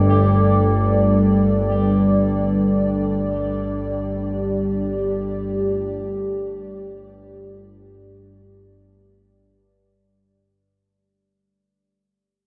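Dark and ominous, this free-time ambient passage is cut from a longer piece and rests on a G5 chord while fading out across its full 10.4 seconds. Up front, a deep, detuned analog pad holds sustained chords with a sub octave and a wave-folded edge, treated with chorus. Beside it, an overtone-sweeping drone in the low register moves its resonant upper partials through chorus, phaser and its own reverb, with slow attack and long release. Tubular bells play quiet, mellow arpeggios on G4, struck with a padded hammer and given a vintage, band-limited tone with tape echo. A bronze singing bowl, barely audible, adds a meditative metallic ringing with slow beating. The whole scene sits in a huge, wet reverb with an 8.0-second decay.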